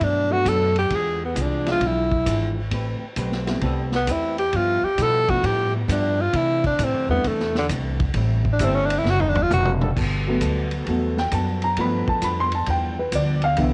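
Swinging and energetic, this big band swing excerpt features a breathy, up-front tenor saxophone soloing with light vibrato and scooped notes, a drum fill at 9.1 seconds, and a woody, slightly detuned upright piano solo at 10.0 seconds, all over a growly pizzicato upright bass, a clean, compressed hollow-body jazz guitar in the background, a vintage drum kit with dark cymbals and a tight kick, and a very quiet, distant trombone section holding mellow chords, with cassette tape coloring the saxophone, guitar, drums and piano in a home recording with light reverb.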